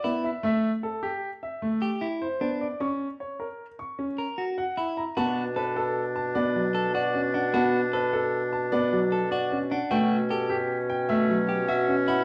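Urgent and hypnotic, this minimalist classical pattern music at 152 BPM in 6/4 sets an intimate baby grand melody with audible action noise and a deep, vintage concert grand accompaniment against a twangy, slightly broken-up electric guitar arpeggio, before a smooth oboe second line and a mellow bassoon bass with light vibrato enter at 5.2 s as the harmony settles into B minor, all in a dark production with a large, wet studio reverb.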